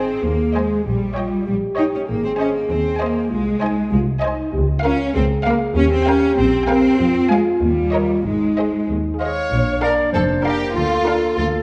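Cinematic orchestral music in a mischievous, playful mood, cut from a longer piece, in a straight 2/4. Bowed strings carry the texture: the rich, focused violin section sings the melody from the background while a second violin section adds a second line, a softly attacking viola section adds expressive accompaniment, and the lush cello section sits close and up front on the bass beside a smooth, distant-sounding double bass section, while a dark, tight French horn section holds sustained chords. At 9.2 seconds a mellow solo clarinet enters with a second line as the harmony moves toward Bb, all set in a moderate scoring-stage reverb.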